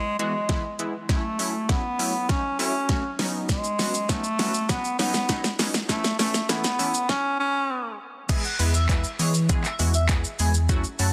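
Upbeat and euphoric, this dance-pop clip opens with a clear, jazz-style bass clarinet carrying the melody with light vibrato and scooped notes through tape echo, over a punchy, detuned sawtooth polysynth comp that warbles with chorus and sidechain pumping. A smooth, electronic R&B drum kit with a soft kick, fat snare, handclaps and shaker drives the build-up before a brief stop. At the drop around 8.3 seconds an airy, dreamy sine lead and a deep, round sub bass enter, both pumping with sidechain, all set in light reverb within a dense, heavily limited mix cut from a longer piece.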